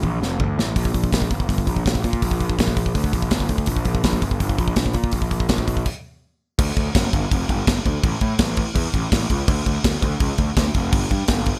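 A growly, fuzz-soaked picked electric bass sits up front with overdrive, driving this dark, epic heavy metal excerpt at 165 BPM in straight 4/4, settling into D harmonic minor from 6.6 s. A polished, airy studio drum kit with gated reverb, bright cymbals, a medium-tuned snare and a tight kick opens with a fill, then a stop arrives at 5.9 s before the second section begins at 6.6 s. The bright 1980s-style digital production keeps the sound dry and close.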